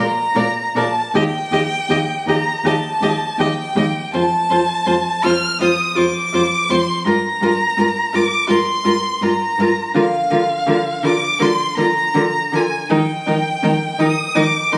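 An expressive first violin sits up front with vibrato, soft attacks and portamento, carrying the high melody of this lyrical, warm, slow romantic movement for string quartet at a rubato 81 BPM in 4/4, settling into Eb major from 9.9 s, while a rich, smooth and even second violin holds a quieter middle line, a distant viola with vibrato and gliding portamento fills in the accompaniment, and an up-front cello with the same soft attacks and vibrato anchors the bass, the whole excerpt cut from a longer piece and caught on a phone in a recital hall with a moderate 1.5-second reverb.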